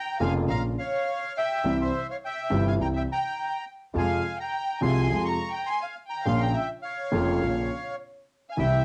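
A reedy bandoneon sits up front and carries the melody in this passionate, melancholic tango fragment, its tone softened by the blur of cassette tape. The baby grand piano is the loudest part: warm, open and long-sustaining, it enters at 0.2 s with a broad accompaniment that reaches down into the deep register. Behind the lead, a rich studio violin section plays a smooth, even second line with vibrato, also carrying a cassette-tape coloring. A very quiet, dark string section adds soft-attacked sul tasto stabs with light vibrato, while a woody pizzicato upright bass on steel strings anchors the low end. The rubato feel lets the harmony drift from Bbm through C and Fm before returning to Bbm, all set in a wet, short studio reverb with the character of a home cassette recording.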